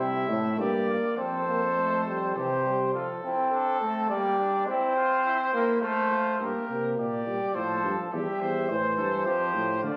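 A warm cornet with light vibrato carries the melody up front over a distant, roomy mellow trumpet on the second line, a clear trombone accompaniment and a bass trombone that rests from 2.9 to 6.4 seconds, together shaping a lively, stately classical canzona in three with imitative writing, heard in this passage cut from a longer piece and captured on a phone in a reverberant room.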